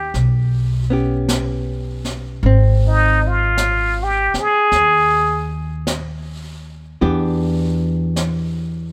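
A plunger-muted trumpet leads this brief jazz ballad excerpt at a slow 52 BPM with a lazy swing, carrying a romantic, intimate melody between Eb4 and Ab4 until it falls away at 5.5 seconds. Its tone is bright and punchy with a wah-wah edge, played forcefully in a jazz style yet sounding distant and roomy even as it sits up front. Beneath it, a hollow-body electric guitar supplies clean, picked accompaniment with a dark, compressed sound, moving through chords from Ebaug7 to Ab and on to Em7 at 7.0 seconds. A pizzicato upright bass on steel strings gives a woody, warm low end, while a brushed drum kit enters at 0.1 seconds with a high-tuned snare and hi-hat, sounding natural in a small room and sitting well back in the balance. The recording is dry, with little reverb, and it is cut from a longer piece.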